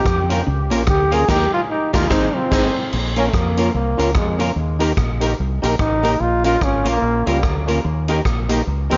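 A clear, smooth-topped trombone with vibrato and dub echo opens this driving, mischievous ska excerpt in Bb dorian at 146 BPM, over a brief spring-reverbed riff from a clean, compressed electric guitar that drops out at 1.0 seconds. A round, dark fingered dub bass and a punchy, swinging big-band drum kit with crash, hi-hat, rim click and a medium-tuned snare drive the swung groove. At 0.3 seconds they are joined by hollow-body archtop accompaniment carrying dub echo and by lightly overdriven tonewheel organ stabs with key click and a stopped rotary speaker, tucked in the background. The band hits an accent between 1.3 and 2.9 seconds as the trombone solos across chords moving between Bbm, Eb and Ab, all set in a small, lightly reverberant room with vinyl crackle and a dulled top end.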